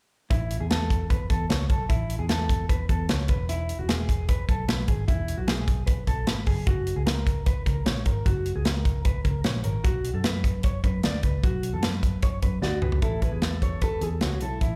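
Jangly indie pop at 151 BPM in A major, bright and breezy, cut from a longer piece and heard as a live gig through the venue's PA with club reverb. A dark, compressed electric guitar plays clean fingered arpeggios with slapback echo over a round, foam-muted picked bass and an up-front, polished drum kit with a tight kick and medium-tuned snare, moving through A, E, F# and Bm. A drum fill at 12.6 seconds brings in a fingerpicked nylon-string guitar melody, classical in tone with audible finger squeak and slapback echo, as the chords return to A at 13.0 seconds.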